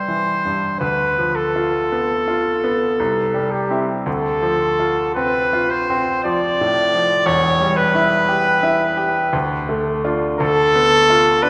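The clear trumpet carries the melody from start to finish, its classical-style tone sounding distant and roomy even as it sits up front and stays between G4 and D5. Beneath it, a bright baby grand piano supplies the accompaniment across a span from E1 to G4, its brilliant, polished sound intimate and present, with short sustain and audible action noise. This romantic classical duo moves in an unhurried 3/4 with uneven beats and rubato, giving the 11.5-second excerpt, cut from a longer piece, a melancholic, yearning mood. The harmony drifts from C through Bdim/D, Dm7 and Em6 before settling on Dm and returning to Bdim/D at 10.4 seconds. A wet concert hall reverb frames the pair, heard from further back in the room, with a faint mains hum underneath.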